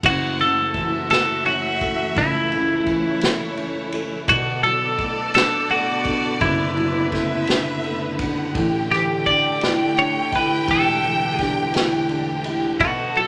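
A bright, twangy twelve-string electric guitar carries the melody up front, its clean, picked tone compressed over this aching, dramatic pop ballad in a slow six-eight pulse. Beneath it, a felt-muted upright piano supplies soft, mellow accompaniment that feels intimate and close, reaching down into deep bass notes. A lush string section holds smooth, sustained chords with vibrato, while a violin section adds an expressive second line above. An acoustic drum kit played with bundle sticks sits distant and roomy, with dark cymbals, a punchy kick and a medium-tuned snare. Moderate large studio reverb gives the whole blend a spacious glow as the harmony moves from F#m7 to Bm7 at 4.3 seconds and on to A7sus4 at 8.6 seconds in this excerpt from a longer piece.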